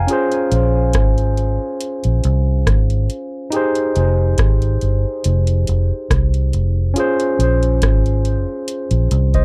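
A dry, close 1970s-style studio sound frames this bittersweet, longing lovers rock reggae cut from a longer piece at 70 BPM with a gentle swing, where a barky tine electric piano, lightly overdriven through a combo amp with tape echo, voices Bbm9 to Fm7 and back over a dark, round, foam-muted fingered electric bass and a booming analog drum machine with a deep kick, metallic hats and rim clicks, re-recorded in a small room and entering at 0.1 seconds.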